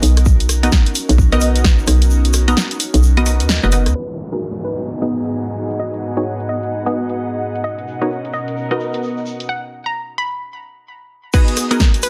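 A swung, bouncy two-step garage groove drives this soulful clip, built on a layered electronic kick up front, a house kit with a punchy snare, bright hats, rim clicks and crash, a grainy tube shaker in the background, and a hollow, knocking FM bass that plays only until 3.9 seconds. Over an airy, breathy pad that pumps with sidechain, full-bodied sawtooth chord stabs coloured by chorus, phaser and dub echo move between Bmaj7 and G#m7. At 4.0 seconds a detuned square-wave pluck melody with delay enters alongside intimate sul tasto chamber strings and a background downlifter, while a filter sweep carries into a break at 9.5 seconds, all within a dense, heavily limited mix with light digital reverb.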